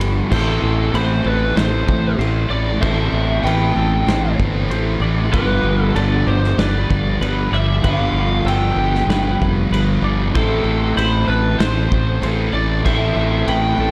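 A hazy, dreamy shoegaze and dream pop rock passage in A minor at 96 BPM opens with a bright, twangy twelve-string electric guitar shimmering in the background through lush chorus and slapback echo, alongside a hollow-bodied overdriven semi-hollow guitar riff bathed in reverse reverb and a dark, fuzzed-out guitar riff thickened with chorus. An up-front, punchy fingered electric bass and a loose indie drum kit with dark cymbals and a rolled-off top sit underneath, while a dark, overdriven lead guitar with slapback echo carries the melody from 0.3 seconds. The chords move from Am to G7 at 5.3 seconds and settle on Am7 at 10.3 seconds, all within light reverb and small room ambience in this fragment cut from a longer piece.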